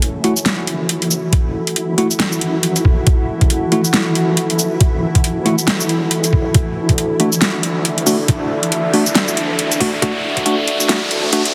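Heavy and cavernous, this deep dubstep excerpt at 138 BPM sits in F# minor with a swung, half-time feel, building throughout as it moves from F#m7 to D at 6.5 seconds. A moody sawtooth pad with chorus holds sustained chords over a very quiet, detuned wobble bass, while a grainy, flickering granular texture hovers alongside bright, bell-like electric piano stabs treated with a low-pass filter and dub echo. Up front, a layered drum kit with a huge snare, metallic hats and shaker is joined at 1.3 seconds by a gritty, thumpy pitched-down kick, and an electronic riser enters at 7.8 seconds, all set in a huge ambient reverb under a dense, heavily limited master.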